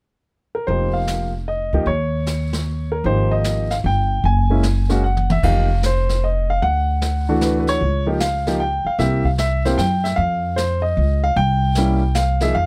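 Swinging in a lilting 3/4 at 152 BPM, this moody, late-night jazz piano trio in F minor opens with the concert grand carrying the melody from 0.5 seconds, its tone full and rich in the low end. A woody pizzicato upright bass and a brushed drum kit with dark cymbals and a boomy kick join at 0.7 seconds, and a drum fill at 5.0 seconds leads into a second section whose harmony moves through chords like Dadd9, Db and C7. The piano and bass sit up front in a dry, natural studio sound with little reverb, while the drums stay further back.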